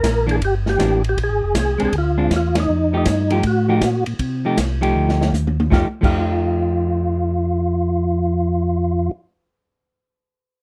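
A swung 4/4 groove carries this short, greasy and soulful soul jazz organ trio cut from a longer piece. A tonewheel organ with a percussive second-harmonic attack, key click, chorus vibrato and a fast rotary speaker plays the melody in a middle register. A second, mellower tonewheel organ holds down the bass line with round, clean tone through a slow rotary speaker. A dark, clean hollow-body electric guitar joins with picked accompaniment, while an acoustic drum kit with dusky cymbals, a medium-tuned snare and a boomy kick fills the small room. The band hits an accent at 2.5 seconds, the drums play a fill from 5.0 seconds, and the kit stops at 6.1 seconds as the organs and guitar carry on over an F9 chord. The sound is dry, close and detailed, with the organs and drums up front.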